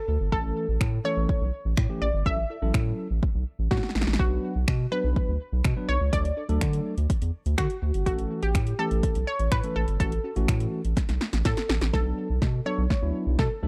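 A dry, close 1970s-style studio sound with a touch of digital ambience frames this bittersweet, energetic dance-pop excerpt in B minor at 124 BPM, cut from a longer piece. An up-front deep house kit with a deep kick, punchy snare, metallic hats and overdriven grit drives it, while a round, dark analog bass pumps under the sidechain alongside a clean tine electric piano that voices the chords from A through F#m7/A, Bm and D. A detuned, warbling analog pluck carries the melody through chorus and tape echo, and drum fills lead into a build-up from 11.9 s to the end at 13.7 s, set over Bm7.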